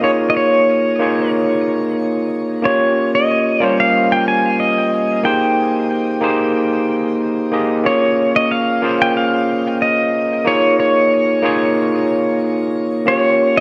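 Wistful and warm, this brief chillout excerpt moves at 92 BPM in a straight 4/4, with a clean, compressed pedal steel guitar up front carrying the melody through fingerpicked slide lines and volume swells, bathed in shimmer reverb and dub echo, while a barky, gritty overdriven tine electric piano, played through a combo amp and shaped by a low-pass filter with shimmer reverb and tape echo, supplies the chords from Db6 through Eb13, Abmaj9 and Bbm7, back to Db6 and on to Bbm6, all set in a wet spring-reverb space and an echo-heavy mix.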